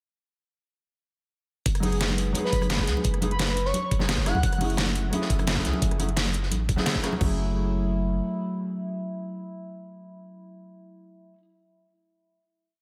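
Dreamy and rolling, this short liquid drum and bass piece drops in at 1.7 seconds with a deep, mellow 808-style bass up front, layered overdriven pop kits with a knocking two-step kick, crash, rim, closed hat and a deep snare, a gritty looped breakbeat with edits, and light ringing congas in the background. A dark, clean hollow-body jazz guitar plays syncopated drop-2 chord stabs through lush chorus and analog delay, while an airy detuned lead with vibrato, portamento and a touch of 12-bit sampler grit adds short answering phrases between 2.4 and 4.6 seconds. After the drums fall away around 7.2 seconds, the bass holds on briefly beneath the guitar's final chord, and the guitar rings on until 11.4 seconds, all set in a light studio reverb.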